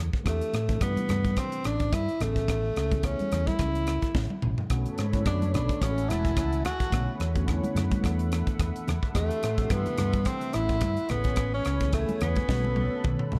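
A warm tenor saxophone with light vibrato and slapback echo leads this nocturnal, slick electric jazz fusion excerpt at 108 BPM in B dorian, with a swung sixteenth feel, riding up front over a crisp fusion kit with a high-tuned snare and drum fills at 4.1 and 12.5 seconds, a round fingered electric bass, very quiet bright congas, a worn, slightly out-of-tune tine electric piano with phaser in the background, and a smooth, detuned analog pad with chorus that arrives at 4.7 seconds.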